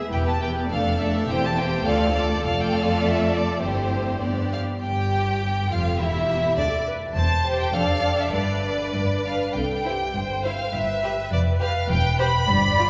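A long, wet church reverb surrounds this restless, stormy classical-period movement for string orchestra, heard at a quick 102 BPM in 2/4 in C major. A close, expressive violin section carries the melody high above an up-front, focused second violin line and a warm viola section with soft attacks and portamento, while a rich cello section and a lush double bass section supply the bass, every part bowed with vibrato. The harmony opens on Em, turns to Fadd9 as a new passage begins at 4.8 s, and settles on G before closing on a rootless C/E at 11.9 s.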